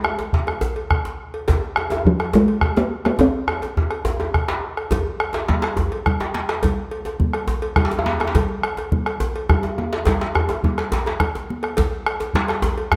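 A resonant talking drum carries the melody over a round, up-front bombo and a metallic cowbell in this driving, festive West African drum ensemble piece in 12/8 at 140 BPM, joined at once by two tight, cracking djembes, one buzzing with metal rattles and the other more distant in a large room, before bright, high-tuned congas enter after a drum fill from 3.2 to 4.9 seconds, all captured with close, detailed microphones and light reverb in this cut from a longer piece.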